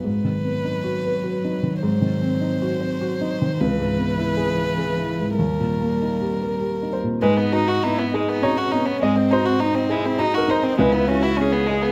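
Close, detailed microphones capture a moderate recital-hall reverb around this fragile, reflective neoclassical fragment in 3/4, played with a rubato feel. A single violin carries the melody up front with light vibrato, a soft attack and an airy, intimate sul tasto bow, while a lone cello adds a dark, woody second line from a more distant place and a smooth, vintage-toned grand piano with short sustain supplies the accompaniment up front. All three play through the full 11.9 seconds, with a new section beginning at 7.2 seconds.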